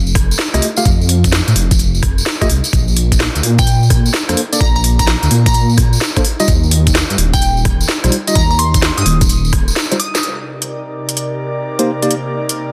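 A dense, heavily limited modern mix with light digital ambience carries this soulful, moody, swung two-step UK garage cut, where a deep, rumbling detuned saw bass pumps beneath a gritty, overdriven electronic kick, a tape-toned garage kit of crisp hats, rim clicks and a cracking snare, a distant, jingly tambourine and worn, slightly out-of-tune electric piano stabs with tremolo and delay, joined at 3.6 seconds by a crystalline wavetable pluck melody with chorus, before the kick drops out for a drum fill at 9.8 seconds and an airy, breathy pad enters with sustained chords at 10.2 seconds.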